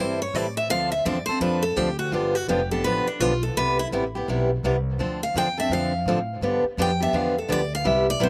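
From the first beat, a bright, up-front steel-string guitar takes a lively, charming solo with audible finger squeak, over a full-bodied dreadnought guitar's accompaniment touched with slapback echo and a dark, woody, thumpy pizzicato upright bass on gut strings, in brisk jazz manouche swing at 168 BPM that moves from Am7 through Dm7 and G7 to Cmaj7, recorded dry and outdoors.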